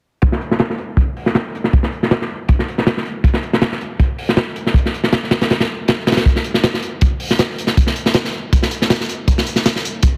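This drum and bass excerpt runs at 159 BPM in a straight 4/4, carrying a dark, nostalgic mood. Its one part is a crunchy breakbeat drum kit of hi-hat, kick drum and snare drum, playing from 0.2 to 10.1 seconds. The acoustic kit sounds saturated and gritty, with a tight kick, a medium-tuned snare and a rolled-off top that leaves it mid-forward and up front in the mix. Low-pass filtering sits on the kick, hats, snare and room, and a filter sweep on the drums spans the whole passage. Light reverb and a studio-room character surround the kit, and the master is dense and heavily limited in a modern style.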